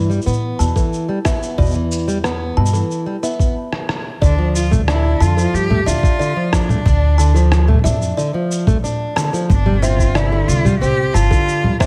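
A dark, woody pizzicato upright bass with tube saturation sits up front in this intimate, wistful folktronica excerpt at 91 BPM in D dorian, under boxy fingerpicked steel-string guitar arpeggios and a hollow, thumbnail-plucked kalimba line, both touched with digital delay, along with a muffled, thumpy sampled kick and tape-toned shaker, rim click and congas, until a stop at 3.6 seconds with a drum fill and band accent opens at 4.2 seconds onto a rich bowed cello melody with vibrato, portamento and delay, the harmony moving from Em to Dm to Gsus4 in a close, dry sound.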